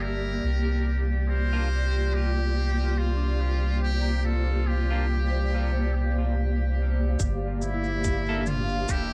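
Ambient dub with a meditative, spacious mood and a lightly swung feel, cut from a longer piece and captured as a home cassette recording with little reverb. A muted trumpet carries the solo melody in a classical style, its metal mute giving a buzzy, thin tone with light vibrato that sounds distant and roomy. Beneath it, a cloudy granular pad holds evolving, blurred chords under a filter sweep, while a round sub bass sits up front with tube saturation. A soft FM bell warbles through arpeggios in the background, treated with chorus, phaser and analog delay. A very quiet glassy texture of drifting overtones hovers until 7.2 seconds, and a bright, clean semi-hollow electric guitar adds picked stabs treated with dub echo from 1.5 seconds. The harmony moves from C9sus4 to Gm69 at 7.2 seconds, where a tight electronic kick joins electronic cabasa and toms.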